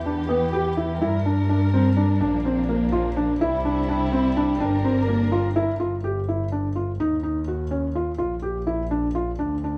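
Urgent and restless, this contemporary chamber excerpt moves in an uneven 5/8 at 250 BPM in G dorian, with a felt-muted upright piano carrying the arpeggios up front, its mellow, boxy tone laced with audible action noise. Beneath it a single bowed double bass plays sul tasto with an airy, nasal sound, while a dark string section holds sustained chords with vibrato and portamento until 5.8 s, when the passage moves into its second section. A moderate recital hall reverb surrounds the parts, and the harmony travels from Em and Gm through Bb, C, Gm and G5 to Ebm7 before returning to Bb.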